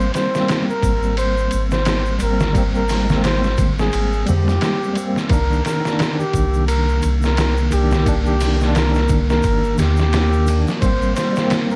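A swung 87 BPM trip hop groove in 4/4 rides on a pitched-down, muffled, overdriven sampler-style drum kit with a thumpy kick and medium-tuned snare up front, a round, deep dub sub bass, and hard-hand congas with a tube shaker sitting back in a live room. Over a worn, slightly out-of-tune tine electric piano with overdrive and tremolo, a veiled bucket-muted trumpet carries a jazz-style melody in C minor through tape echo, with light vibrato and a smooth top. At 5.3 s a dark, detuned analog pad with subtle chorus slips in beneath as the harmony moves from Abmaj7 to Cm7, and the dry, vinyl-crackled mix feels hypnotic and brooding.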